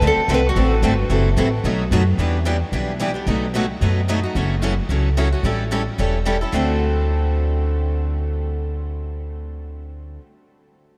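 Acoustic string swing in the jazz manouche style, charming and swinging, this excerpt from a longer piece moves briskly over a chord progression that opens on D7 and returns to it at 6.5 seconds. A picked steel-string guitar with finger squeak and a touch of tape echo carries a short melody that stops at 1.9 seconds, while a second bright steel-string guitar and a boxy swing-style guitar keep up the accompaniment throughout. Up front, a woody, thumpy gut-string upright bass plays pizzicato, and a huge ambient reverb places the group in a vast, echoing space.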